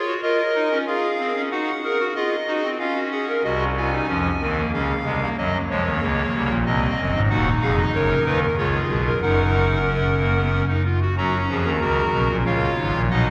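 Driving and solemn, this baroque-style four-part fugue in triple metre is played on a solo pipe organ using a hollow clarinet reed stop with baroque voicing and tremulant, set up front and ranging from deep pedal notes to high treble. A long, wet cathedral reverb places the listener further back in the room with a softened, dark top end, while the harmony passes through minor and diminished chords before settling into a bright major centre around 7.3 seconds. The 13.3-second passage is cut from a longer piece.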